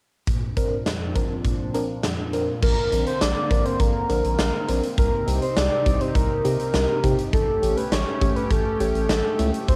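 A warbling FM electric piano with tremolo and phaser, a shimmering pulse-width pad and a punchy, up-front arena drum kit with crash, hi-hat, kick and snare open this nostalgic, wistful synth-pop excerpt at 102 BPM in Bb major, all three colored by cassette tape in a small room, before a round, detuned octave-layered synth lead with vibrato and a thick, saturated sub bass enter at 2.6 s over chords moving from Bbadd9 through Cm to A7.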